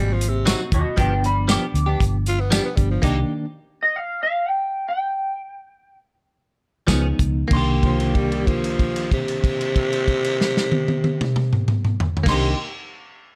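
Mournful and smoky, this straight-eighth soul blues in 4/4 is cut from a longer piece and sits in a small room. Up front, an electric guitar through a small old amp carries the melody with a bright, twangy, slightly broken-up tone and analog chorus, while a raspy, growling tenor saxophone with light vibrato and scooped notes plays a jazz-style second line beneath it. A reedy electric piano with overdrive and fast tremolo sits in the background, a round, foam-muted fingered bass gives a dark, punchy low end, and a distant soul drum kit with dark cymbals, a tight kick, tambourine and toms keeps the beat. A direct-recorded clean guitar adds compressed stabs bathed in lush chorus and slapback echo. The band stops at 3.0 seconds as the pace slows, the piano trailing off just after and leaving the amped guitar alone until the rhythm section and piano return at 6.9 seconds. From 7.5 seconds a held note stretches across the closing stretch over a Cm7 chord, and the saxophone re-enters at 7.8 seconds.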